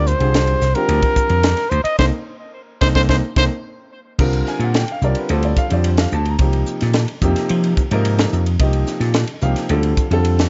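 A straight 4/4 groove at 109 BPM drives this funky, slick electric jazz fusion in C minor. A crisp acoustic drum kit with a high-tuned snare, hard-hitting kick and pumping small-room sound sits up front beside a bright, growly, amped vintage slap bass, while a boxy grand piano supplies accompaniment. A breathy, vibrato-laden solo trumpet carries the melody until 3.4 s while the drums fill and the band accents from 2.0 s, and the piano adds a short fill before the second section arrives at 4.2 s, all in a dark production with studio reverb.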